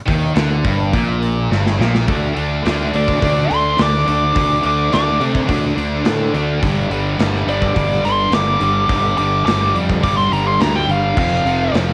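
A straight 4/4 hard rock groove drives this aggressive, heavy excerpt, with a gated 80s drum kit in a bright stone room punching out kick, snare, hi-hat and crash, a growly fuzz fingered bass, a crunchy background guitar colored by phaser and a high-gain distorted guitar grinding out the riff, all on a home cassette recording with light reverb, until a drum fill at 1.5 seconds sets up a bluesy, up-front overdriven lead guitar solo that comes in over the band at 3.0 seconds.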